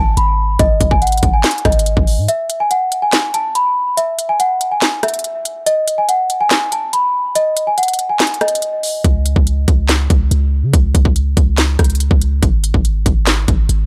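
The recording is dry and gritty, with every part sitting up front and barely any room around it. This hard-hitting, melancholic trap fragment moves in a half-time feel, opening on a bell-like, delicate celesta melody with bright, hard felt hammers and a tape echo trailing its notes. A deep, boomy 808-style bass with a sine body, a noise layer and a fast, decaying attack sounds at the start, drops out at 2.3 seconds for a break carried by the celesta and drums, and returns at 9.0 seconds, just as the celesta stops. Throughout, the electronic trap kit pushes forward with a hard-clipped kick, sharp snare, crisp hi-hats, handclaps and rim clicks, all carrying a tape-warmed edge. The sweet, bright top line against the dark low end gives the piece its bittersweet weight.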